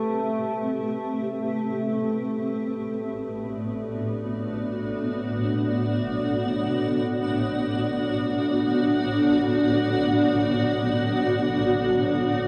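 A granular cloud pad fades in from 0.0 seconds, holding cloudy, blurred chords that begin on Am9 and shift to Bm/A at 2.2 seconds, giving this melancholic yet serene ambient fragment of a longer piece its free-time, floating feel. Up front in the mix, the pad sounds full-bodied and detuned, its sine-based grains evolving slowly with soft attacks, long releases and its own built-in reverb. Beneath it, an analog drone sits on a single A3 in the background, its sawtooth and pulse-wave tones given motion by pulse-width modulation, chorus and phaser while it gradually fades out across the same 12.5 seconds. The whole recording is bathed in a huge, wet reverb space with a long decay. A worn cassette-tape character adds warbling pitch drift, lending the sound an aged, wavering quality.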